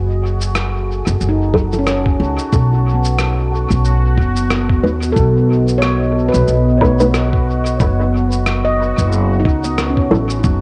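A woody, up-front pizzicato upright bass anchors this hazy, meditative ambient dub excerpt at 91 BPM in F# dorian, moving from F#m to B7 and back beneath a deep, dark, detuned pad with chorus and a resonant, bubbling stepped-filter texture, while muffled electronic cabasa and rim click with dub echo enter at 0.4 seconds, a ringing handpan plays filter-swept, echoing arpeggios from 1.3 seconds, and at 1.5 seconds a thumpy, compressed electronic kick drum arrives with muted, filter-swept dub chord stabs, the whole captured as a home cassette recording with light reverb.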